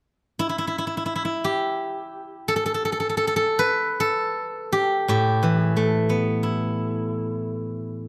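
This brief excerpt of Chinese traditional music for solo plucked strings unfolds in free time, carrying an elegant, pastoral mood. A steel-string zither plays alone from 0.4 to 8.1 seconds, moving between A2 and B4, its fingerpicked tone silvery and ringing. Close, detailed miking places the zither up front, with a light reverb around it.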